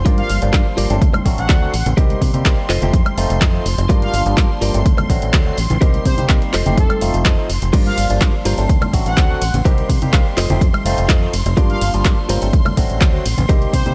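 An overdriven, punchy electronic kick sits up front in this funky, sensual filtered disco house excerpt at 125 BPM in G minor, joined by a dry analog drum machine of claps, hi-hats, shaker, woodblock, ride and crash, plus very quiet tambourine and congas with hard hands. A foam-muted fingered bass with tube saturation anchors a looping Gm7–D7–Cm7–F7 progression, while a bright, compressed direct guitar riff and a barky tine electric piano with phaser share a 12-bit sampler grit, and a lush string machine holds sustained chords in the background. Over this bed, a bold, fat analog synth brass melody with chorus and delay enters at 0.2 seconds, and sidechain pumping breathes through the strings, guitar, keys, bass, brass and the drum machine's hats, cymbals and percussion in a dry room.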